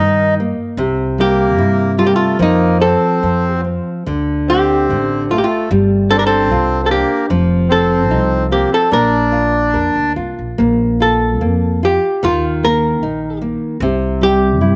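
A clean, dark hollow-body archtop guitar carries the longing, mournful melody of this rubato fado-style ballad, joined up front by a reedy, vintage accordion second line that drops out at 10.1 seconds and a full-bodied, fingerpicked nylon-string guitar accompaniment, all with a cassette-tape tinge, while a woody pizzicato upright bass underpins them in a moderate spring reverb on this home cassette recording cut from a longer piece.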